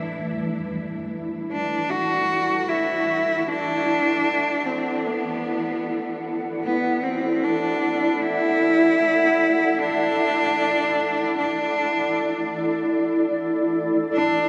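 The warm, bowed cello carries the melody from 1.5 seconds onward, a single player with a focused tone, a smooth top and vibrato, sitting up front and colored by shimmer reverb and tape echo. Alongside it, a granular cloud pad sustains chords from the very start, its dark, blurred texture evolving through a slow attack and long release, with its own built-in reverb joined by shimmer reverb. This is reflective, spacious ambient music in free time, tuned to A4 = 441 Hz and cut from a longer piece. The harmony moves from D69 to D at 6.6 seconds and settles on A5 at 13.0 seconds. The whole recording sits in a huge, wet reverberant space with a decay of 7.9 seconds, so the cello's line and the pad's cloudy, wave-folded unison tones melt together.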